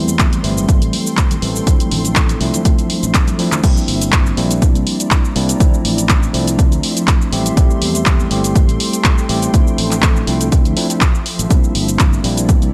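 A punchy, tape-warm electronic kick sits up front in this hypnotic, late-night deep house excerpt, driving a layered, overdriven kit of handclaps, hi-hat, shaker and crash, with very quiet, soft-handed congas adding color until a drum fill at 3.1 seconds leads into the drop at 3.6 seconds. A growly, overdriven fingered electric bass and clean tine electric piano stabs, roughened by vintage 12-bit sampler grit and analog delay, pump with the sidechain over a cycle of Am7, Dm9 and C9 chords. Far behind them, a cloudy, detuned granular pad drifts in blurred, evolving reverb, all captured with a dry, gritty hardware character.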